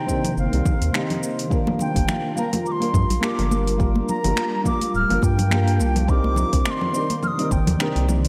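Swung sixteenths at 105 BPM in 4/4 drive this smooth, relaxed sunset chillout excerpt in C minor, where a layered electronic kick and a deep house drum kit with metallic hats, finger snaps and shaker sit under a round, up-front analog bass entering at 0.4 s, with hard-handed congas joining in the background at 1.7 s, a dark, thumb-plucked nylon-string guitar with finger squeak and tape echo, a shimmering, ethereal pad with chorus and phaser, and a pure wooden flute melody with vibrato and tape echo, the mix dreamy and soaked in hall reverb over Cm9 and Gm7.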